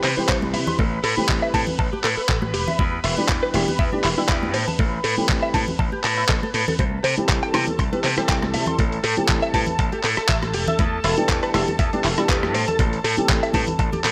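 This groovy, cosmic nu-disco excerpt at 120 BPM in A minor opens with punchy, up-front slap bass and a gritty sampler-style kit of handclaps, hi-hat and rim click. A clean, picked electric guitar riff with ensemble chorus and dub echo, a dark, boxy grand piano with its own dub echo, and a thick, detuned unison pad pumping under sidechain with chorus and phaser also start at once. A thumpy, tape-warm electronic kick joins at 0.3 seconds and ringing, high-tuned congas sit in the background from 0.4 seconds, with studio reverb on the kit and kick, a 55% swing on the 16ths, and harmony circling Cmaj7, Am7 and Em7 inside a light digital ambience.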